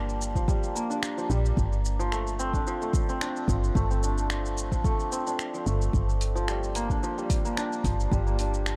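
A lightly swung 110 BPM groove of finger snaps, hi-hat and shaker from a tape-warm, small-room deep house kit, joined at 0.4 s by a deep, layered electronic kick, drives this earthy, hypnotic organic downtempo fragment in G minor, where a round, woody FM bass sits up front beneath shimmering, ringing santur arpeggios trailed by digital delay over Gm7 moving to Dm7/G, set inside a dark production with light reverb and digital ambience.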